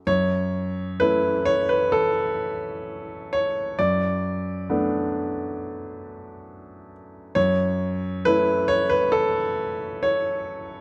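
A smooth, vintage-toned grand piano sits up front and plays alone throughout this wistful, reflective neoclassical minimalist passage in F# minor, moving at a rubato 66 BPM in 4/4 across a range from F#2 to D5. The harmony drifts from F#m7 to Bm7/F# at 3.8 seconds and returns to F#m7 at 7.4 seconds. Close, detailed miking and light reverb give the piano an intimate clarity in this short section cut from a longer piece.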